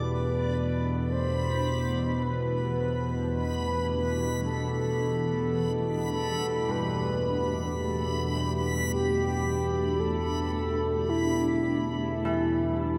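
Cavernous and dark, this slow dark ambient drone excerpt in E minor at 54 BPM rests on an up-front analog drone of chorused sawtooth and pulse-wave tones, under a round, warbling horn-like synth lead with vibrato and tape echo, a cloudy granular pad in the background and a reversed, dreamy swelling texture, while very quiet bronze carillon bells ring out arpeggios from 6.7 s, in an echo-heavy mix with a long plate reverb.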